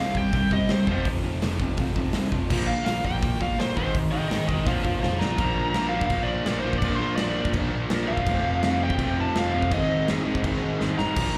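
This fragment sounds like a live gig heard through a club's PA, with small-room ambience and club reverb around the band. It is angry, aggressive punk rock at 166 BPM in a straight 4/4. A dark, distorted lead guitar sits up front with slapback echo, soloing through the opening 5.4 seconds before the song moves into its next section. Beneath it, two raw, overdriven garage guitars pick riffs with slapback echo: one bright and set back in the mix, the other warm and lo-fi. A tight, double-tracked distorted guitar adds another background riff, drops out at 5.4 seconds and returns at 11.2 seconds. A punchy electric bass with fuzz, recorded both direct and through an amp, anchors the low end, while a big acoustic kit plays up front with crisp cymbals, a medium-tuned snare, a thumping kick, hi-hat, crash and drum fills.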